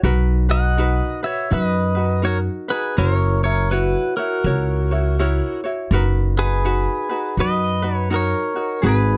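Relaxed and sunny, this short cut from a longer Hawaiian piece rides a lilting swung groove over Bmaj7, F#7 and Bmaj7/F# chords. A bright, fingerpicked acoustic ukulele sits lightly in the background while a woody, thumpy pizzicato upright bass on steel strings stands up front from the first beat. At 0.5 s a clean, compressed electric pedal steel guitar takes the melody with fingerpicks, slide and volume swells, its warm tone placed forward in a light reverb.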